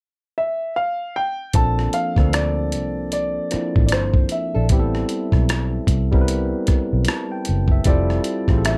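A lazy 4/4 groove with a swung sixteenth-note feel gives this sultry, late-night R&B and neo-soul fragment its loose, unhurried sway. An intimate grand piano opens alone at 0.4 seconds, carrying the melody with long sustain and the soft clatter of its action audible up close. At 1.5 seconds a sampler-style boom bap kit arrives up front, gritty and compressed, with a thumpy kick, hi-hat and rim click that sound re-recorded in a large room. A barky, clean tine electric piano enters alongside it, played through a combo amp, and a moment later a dark, round, foam-muted fingered bass settles in underneath. At 4.5 seconds a fingerpicked classical nylon-string guitar with fresh strings adds a fleeting second line touched by slapback echo, while the harmony drifts through Bbmaj9, Am9 and Fmaj9 in a dry, close-sounding mix.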